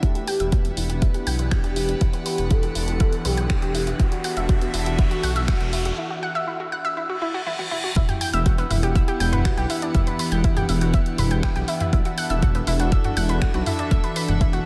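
A straight 4/4 pulse is driven by a punchy, tape-warm electronic kick up front, together with a house drum kit of finger snaps, hi-hat and toms that was re-recorded in a large room and filtered. This cinematic, hypnotic stretch of melodic techno, cut from a longer piece, rests on a menacing, saturated detuned saw bass that pumps against the kick alongside round, nasal analog pluck arpeggios carrying chorus and tape echo, with a filter sweep through the build-up. An evolving wavetable pad morphs under a phaser in the background, while a symphonic string section bowed sul tasto adds a floating, pure layer. A smooth, mellow portamento lead sings with vibrato, chorus, cassette tape colour and tape echo before it stops at 5.9 s. A riser enters at 2.0 s, and after a break a reverse cymbal and a drum fill lead into the drop at 8.0 s, the whole mix soaked in a dreamy church reverb.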